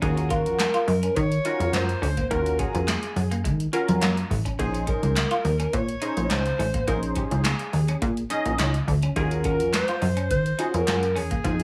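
A mellow alto saxophone with vibrato, scooped notes and slapback echo sings a jazz-style solo over a late-night early-eighties boogie funk groove at 105 BPM, driven by a plucky, up-front analog bass, a detuned, chorused polysynth comp with a moving notch, a clean semi-hollow electric guitar riff in lush chorus sitting in the background, and a booming drum machine with gated reverb, made up of deep kick, crisp snare, handclaps and metallic hi-hat, all moving from Ebm9 to Bbm11 and back in this 11.6-second excerpt cut from a longer piece.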